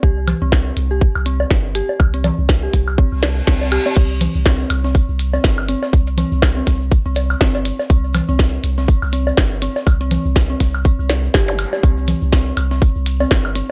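A dry, gritty hardware sound with little reverb frames this cool, quirky minimal techno, cut from a longer piece and riding a swung 4/4 groove. Up front, a tight, layered electronic kick anchors the track beside a deep, punchy sine sub bass with a pitch-drop attack and sidechain pumping. Over them, a dark detuned synth bell plays an eerie, inharmonic FM riff, warbling through chorus and tape echo and also carrying sidechain pumping. A minimal click drum kit, with its tiny snare, clicky hats and crash, is re-recorded in a large room, while overdriven analog congas and woodblock carry the cramped air of a small room. A reverse cymbal and zap arrive at 3.2 s and return briefly at 11.5 s. From 4.0 s a very quiet, compressed sampler-style drum kit adds hi-hat, snare and tambourine, joined by a grainy, mellow acoustic tube shaker.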